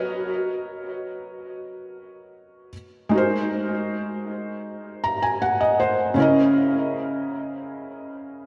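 In free time, this brief fragment cut from a longer R&B piece carries a longing, late-night mood in C# dorian, played by a solo felt-muted upright piano that sounds soft, mellow and intimate, with audible action noise and short sustain sitting up front. The harmony moves from Bmaj9/F# to G#9 at 3.1 seconds, a felt piano fill arrives at 4.6 seconds, and the phrase settles on C#m69 at 6.2 seconds. Subtle chorus and a diffuse ambient delay color the piano, while a lush hall reverb soaks the whole mix in a dreamy haze.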